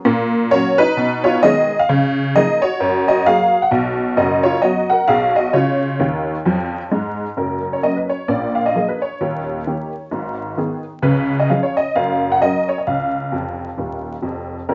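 A lilting swing on the eighth notes drives this exuberant stride jazz passage in four, cut from a longer piece. A lone honky-tonk upright piano carries everything, its detuned, jangly voice sitting up front and reaching from deep in the bass to the upper middle of the keyboard. The harmony moves briskly through a playful cycle of major, minor and sixth-nine chords, with the second phrase turning toward a dominant seventh, passing back through F# and then stopping on C#. The piano breaks into short fills at 6.0 seconds and again at 13.3 seconds, closing each half of the passage with a flourish. A moderate club reverb gives the instrument a small-room glow, while a veil of vinyl crackle and a rolled-off top end lend the sound a vintage patina.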